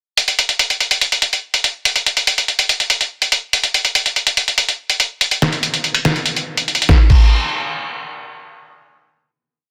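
A bouncy half-time trap beat at 143 BPM drives this short, menacing and melancholic hip hop piece, where a lo-fi sampler-style drum kit plays up front from 0.2 to 7.2 seconds with a thumpy kick, a fat snare layered with finger snaps, sixteenth-note hi-hats with fast rolls and a crash cymbal, all compressed, pitched down and muffled, before a final hit at 6.9 seconds closes the breakdown in light reverb and a dense, heavily limited modern master.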